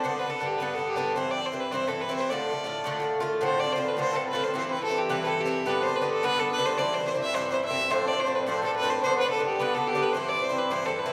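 A lightly swung 4/4 reel at 214 BPM drives this dark yet spirited Celtic folk piece in D dorian, cut from a longer performance. A clear, earthy fiddle with light vibrato carries the melody up front, while the picked, metallic double strings of an Irish bouzouki supply the accompaniment over chords moving among G, C and Dm. At 3.4 seconds a shimmering, ringing hammered dulcimer joins in the background with a second line, all set in the lush reverb of a church or concert hall.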